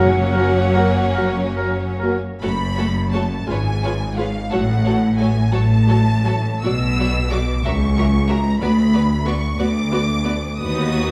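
A lush violin section carries the melody high above the orchestra in this serene, tender slow romantic movement, its expressive, vibrato-laden line entering with a soft attack and unfolding in a rubato 6/8 at roughly 46-63 beats per minute in F# minor. In the opening moments a brief colour gathers around it: an airy flute, a distant oboe, a very quiet clarinet, a dark bassoon and a faint, dry touch of timpani played with medium mallets on calf heads. At 0.8 s a mellow, roomy French horn section joins, holding sustained chords. Once these fall away, around 2.4 s, the strings carry the piece alone, the harmony moving through F# minor, C#7, B minor and related inversions. A second, smooth and more distant violin group weaves a supporting line, while violas sit focused in the background. The cellos and double basses anchor everything with a full, even low end. A generous scoring-stage reverb gives the orchestra a spacious, glowing bloom.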